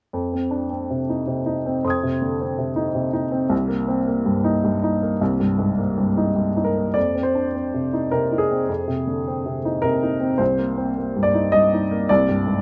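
A moderate studio reverb surrounds a woody, up-front upright piano playing alone in this wistful, intimate excerpt of neoclassical minimalist piano, moving in a rubato 3/4 at 106 BPM across a span from C2 to Ab6 while its harmony alternates between Fm7 and Cm7, with a new section beginning at 7.0 seconds.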